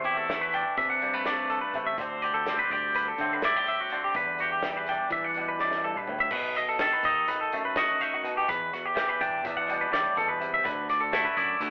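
Twangy electric guitars open alongside a growling, overdriven fingered bass and a loose, small-room indie drum kit in this intricate, wistful math rock and midwest emo excerpt in 9/8 at 249 BPM (eighths) in E minor: one clean, compressed guitar carries a spring-reverbed accompaniment, a brighter one picks high arpeggios up front, the punchy bass holds the low end, and the rolled-off kit plays a fill from 5.6 to 6.3 s before the harmony moves from B7 to Em7 and D69, the band heard through a thin telephone-like sound in a moderate room.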